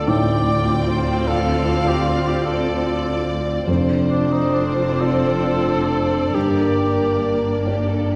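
The recording sits in a wet scoring-stage reverb with a 1.5-second decay, heard from further back in the room, in this short fragment of a sorrowful, moving orchestral film cue in a rubato 6/8 at roughly 44-52 BPM. A mellow cor anglais carries the melody with vibrato in a classical style, stopping at 7.7 seconds, while a lush violin section holds a high D above it and a second violin line moves between G4 and G5 with a smooth top. Beneath them, a felt-muted upright piano plays soft accompaniment in the background, its short sustain and audible action noise giving it an intimate character. A viola section adds expressive accompaniment with vibrato and portamento, and a distant, dark French horn section holds sustained chords in the same middle register. The low end comes from a dark cello section in the background and a rich, even double bass section, both bowed with vibrato. The harmony moves from Dm7 to F6 at 3.7 seconds and settles on Gm at 6.3 seconds.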